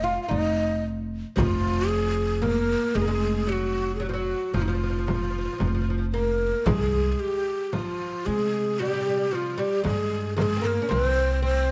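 A breathy, hollow ney carries the melody up front from the start, over a plectrum-plucked fretless oud on a second line and a pizzicato upright bass, with a deep, large frame drum played with hard hands joining at 0.3 s. This Arabic maqam ensemble piece moves in a straight 10/8 at 113 BPM in eighths, its longing, hypnotic mood set in F maqam kurd before shifting to C maqam hijaz at 6.7 s. Light reverb surrounds the whole ensemble, from the woody, double-strung oud to the steel-strung bass, in this passage cut from a longer piece.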